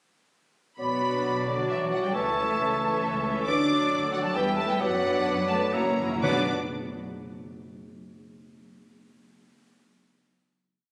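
Classical orchestral piece, urgent and dramatic, in B minor and 3/4 at roughly 119-137 BPM, with a rubato feel that slows from 2.8 s toward a final B minor chord at 6.2 s. A lush, smooth violin section carries the melody, doubled by a hollow flute and by cellos and mellow French horns at the octave, while a clear oboe, bright clarinet and mellow bassoon hold sustained chords and dark second violins and expressive violas with portamento add syncopated chords from 1.0 s over woody double basses on the beats. Hard-mallet timpani enter at 5.7 s with a close, dry fill, and the whole is heard through moderate concert hall reverb as captured on a phone in the room.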